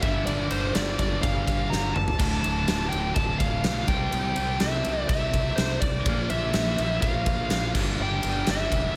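A dark, distorted bluesy lead guitar with slapback echo carries the melody up front in this aggressive, driving hard rock fragment, over a huge arena drum kit with a fat snare, punchy kick and bright cymbals that throws in a fill at 1.7 seconds, a growly overdriven fingered bass, crunchy and scooped high-gain rhythm guitars riffing in the background, and a very quiet, gritty tonewheel organ holding chords through a slow rotary speaker, all set in a lush hall for a big arena sound.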